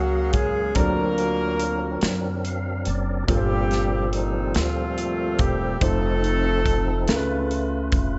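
A dark horn section carries the melody from the start, smooth on top with light vibrato, octave doubling and a slapback echo, over a clear concert grand piano, a fat, lightly overdriven tonewheel organ with key click and slow rotary shimmer, and a woody, thumpy pizzicato upright bass on gut strings. A polished studio drum kit with punchy kick and medium-tuned snare joins at 0.3 seconds, and the organ steps forward with a fill from 2.0 to 3.3 seconds. This slow, soulful gospel passage in 6/8 feels uplifting, moving through rich extended and altered chords in a lightly reverberant room before it cuts off mid-piece.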